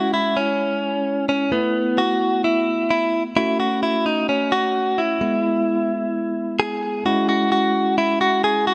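A straight, driving 4/4 pulse carries this brief, melancholic pop fragment, cut from a longer piece, as a clean, picked electric guitar sits up front with the melody, its compressed, scooped tone recorded direct and trailed by tape echo. Beneath it a bright, bell-like tine electric piano plays the accompaniment through a C#m, Asus2, F#m and E progression, with both parts sounding from start to finish. A lush hall reverb surrounds the pair, and at 7.1 seconds the music moves into a new section that returns to C#m.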